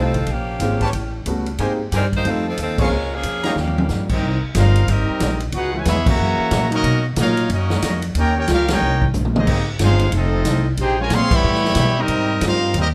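Joyful and swinging, this big band jazz excerpt opens with an edgy, close-miked saxophone section on the melody over clear grand piano accompaniment and tight trumpet stabs, a woody pizzicato upright bass up front and a roomy, distant drum kit with a boomy kick, before a trombone section with vibrato enters on a second line at 3.6 s and a bright, present trumpet section takes over the melody at 4.1 s, with band accents and drum fills punctuating the moderate studio reverb.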